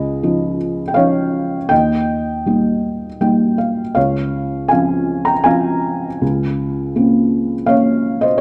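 Peaceful and warm, this short classical excerpt features a lone felt-muted upright piano in 3/4 at 80 BPM, played with rubato and tuned slightly low to A4 = 438 Hz. The thick felt gives the piano a soft, intimate tone, with audible action noise up close, and a brief fill arrives around 2.8 seconds as the harmony moves from Dbadd9 through Eb to Dbmaj7 and Bbmadd9/Db. A moderate recital-hall reverb and a dark, warm production surround the piano.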